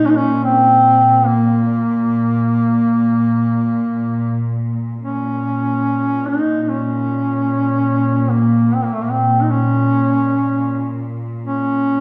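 A warm, vibrato-laden duduk sings a longing, mournful Caucasian folk lament in Bb minor, its scooped notes moving between A3 and Eb4 at a rubato 69-77 BPM in 4/4, over a dark, veiled drone on Bb2 from a muted cello section bowing con sordino with light vibrato, both parts sounding distant yet up front in a wet recital-hall reverb across this 12-second cut from a longer piece, with a new section beginning at 5.0 seconds.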